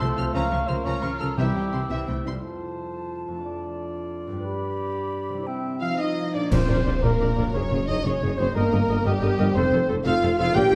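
Cinematic heroic adventure film score in 6/8 at 118 BPM in F major, soaring and adventurous. A dark, vibrato-rich violin section carries the melody over a very quiet second violin line, with a mellow cor anglais, an airy silver flute, a distant clarinet and a dark viola section gliding with portamento. Mellow French horns sustain chords in the background, a vintage-toned trumpet adds stabs, and a ringing fingerpicked harp plays arpeggios throughout. Rich cellos and woody double basses anchor the low end, while timpani on calf heads punctuate. The strings and brass drop away at 2.3 s, leaving the harp and winds, before a bright cymbal swell with clash cymbals and concert bass drum arrives at 4.5 s and leads into a full-band accent at 6.5 s, where a roomy tuba joins, the whole set in a wet scoring-stage reverb.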